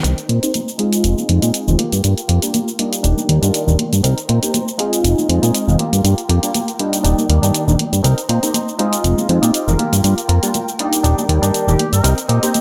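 A filter sweep runs across this nostalgic, funky filtered disco house excerpt in C minor at 120 BPM with a light 16th-note swing, where a fat, saturated analog bass sits up front beneath a warbling polysynth comp with chorus and phaser, a twangy direct-recorded clean electric guitar riff with spring reverb, a tape-warm electronic hi-hat and shaker, hard-handed tube shaker and congas, a rich bowed chamber string section in the background, and a distant horn section with delay adding a brief melody from 9.7 seconds over a Cm7–Fm7–Gm7–Ebmaj7 loop.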